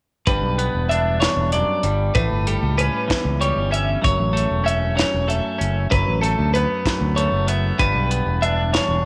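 A steady 6/8 pulse drives this bright, intricate math rock and midwest emo fragment, where two clean, twangy, compressed twelve-string electric guitars (one picking lower accompaniment up front, the other picking high arpeggios) ride over a growling, overdriven fingered bass placed up front and a crisp fusion drum kit with a high-tuned snare, punchy kick and hi-hat, all in light small-room reverb as the chords move from G6 through A7, F#m7 and Bm7/F# back to G6 within about 9 seconds.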